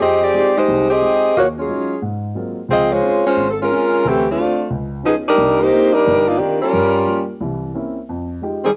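A close-miked, up-front saxophone section carries the melody through this sultry, dramatic swing jazz excerpt at 178 BPM, with cassette-tape grit and plate reverb, over a dark, mellow baby grand piano that accompanies with short sustain in its own plate reverb through a chord sequence that begins and ends on Fm9 at 0.0 and 8.1 seconds, all heard in a small booth ambience on a home cassette recording.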